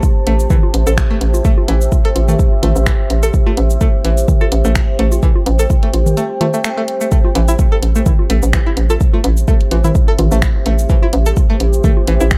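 A dry, echo-heavy mix with little reverb carries this quirky, cool minimal techno excerpt, cut from a longer piece and sitting on A minor at 127 BPM with a 55% swing on the 16ths. A deep electronic kick, re-recorded in a small room, sits up front beside a hollow, bouncy FM bass that knocks out a punchy A1 from 0.3 seconds, its fast attack decaying under sidechain pumping. A layered garage kit of finger snaps, shaker and warm hi-hats rides lower in the balance, while overdriven analog congas and bongos drift in the background through dub echo. A twangy, string-like resonator pluck plays the riff between E3 and A4, bright and sawtooth-edged with a noise layer and filter sweep, coloured by chorus, phaser and analog delay. Above it, a moody, dark ambient pad of detuned unison saws and a sine sub octave swells in slowly and sustains across G4 to A5 with chorus and its own reverb, pumping in time, and a brief break arrives at 6.2 seconds.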